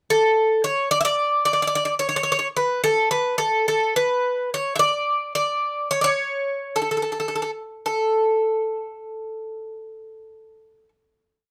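A lone acoustic Greek bouzouki opens the piece at 0.1 seconds, its picked double strings ringing with a metallic edge and some octave doubling as it spins an ornamented modal melody in A major. This short Greek folk tune moves in a straight 7/8 at 216 BPM counted in eighths, with a sunny, warm mood, the instrument sitting up front in a moderate studio reverb. Around 7.9 seconds the melody arrives on a final note, and the bouzouki falls silent at 10.9 seconds.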